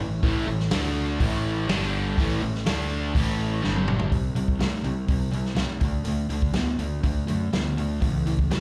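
A growly, fuzz-soaked fingered bass sits up front in this driving, sunny classic rock excerpt, played live at 123 BPM in straight 4/4 and tuned slightly flat to A4 = 436 Hz. Two picked guitars carry the riff together: one crunchy and overdriven, set back in the background, the other bright, distorted and compressed, both with slapback echo. A vintage acoustic drum kit with a punchy kick, a medium-tuned snare, hi-hat and toms enters at 0.2 seconds, sounding natural with a rolled-off top, and rolls through a fill just before the change. A mellow, dark tonewheel organ with chorus vibrato, key click and a slowly turning rotary speaker holds very quiet, round sustained chords until 4.1 seconds. The opening alternates A with D5 and G5, then shifts to C5, D5 and A/C#. The sound is that of a club gig heard through the venue's PA, with light club reverb.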